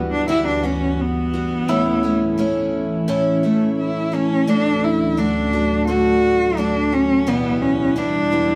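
Pastoral and warm, this short cut from a longer acoustic folk piece moves at an unhurried 86 BPM in 4/4 with a straight feel in D major. A rich, bowed cello carries the melody up front, its expressive vibrato and portamento giving the line a singing quality, and it is featured as a solo through the first 4.5 seconds. Beside it, a picked twelve-string acoustic guitar provides woody, shimmering accompaniment with the octave-doubled ring of old strings, while an ethereal, airy pad sustains mellow chords beneath, thickened by ensemble chorus and its own reverb. In the background, a twangy, clean pedal steel guitar adds a second line with fingerpicked slide and volume swells until 4.1 seconds. The harmony moves from Emadd9/D to A, then settles on D and Em in the second section, and the whole group sits a little further back in a wet studio room.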